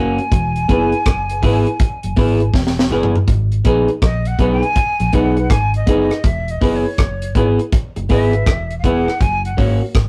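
This roots reggae excerpt sits at a laid-back 81 BPM in 4/4, with a swung sixteenth-note feel, in G# minor. The deep, dry drum kit sits up front with a tight kick, a high-tuned snare, rim clicks, hi-hat and toms, coming in at 0.2 s and rolling through a fill from 2.5 to 3.3 s. Under it, a vintage muted electric bass plays low and round, dark and punchy, while a slightly broken-up electric guitar, fingered and also up front, carries the accompaniment and a woody, boxy upright piano adds mellow stabs. A breathy, bright concert flute with vibrato, a crisp attack and an unsteady tone takes the melody and moves into a solo from 3.3 s as the chords pass through E, G# minor and F#. The rough rehearsal-room sound, with a small room's modest reverb, warm saturation and cassette character, gives the hypnotic groove a lived-in feel.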